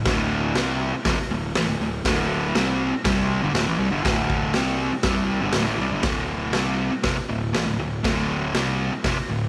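A straight 4/4 pulse at 120 BPM drives this swaggering, raw garage rock excerpt, cut from a longer piece for a small band. The raw garage drum kit sits up front with hi-hat, a medium-tuned snare and a boomy kick, its saturated, gritty sound rolled off at the top and caught in a bright stone room that pumps around the hits from 0.1 to 9.2 seconds. A double-tracked, compressed fuzz guitar plays the riff throughout, picked and distorted between D2 and C4, with a D5 chord at the opening. Beneath it a fingered electric bass, overdriven and round, heard direct and amped, holds the low end from D1 to C2. A moderate echo chamber reverb with a 2.2-second tail fills the space, and the music moves from its opening section into a new one at 6.0 seconds before the cut at 9.5 seconds.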